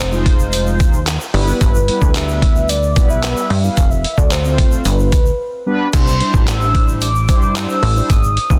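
A dense, heavily limited modern mix set in digital ambience carries this euphoric, carefree dance-pop excerpt in C major at 111 BPM, with a gritty, pitched-down trip hop sampler-style drum kit up front, its thumpy kick, hi-hat, handclaps and crash cymbal sounding tape-warm and re-recorded in a large room. A punchy, funky analog bass plucks beneath with sidechain pumping, while mellow synth brass, dark and detuned with chorus, sustains chords from Ab6 through Em/G, F and G to a closing Cadd9, and a grainy tube shaker sits in the background. Over it all, a round, horn-like synth lead sings the melody with a soft attack, vibrato, chorus and digital delay, and a brief break at 5.4 seconds leads into the repeated section.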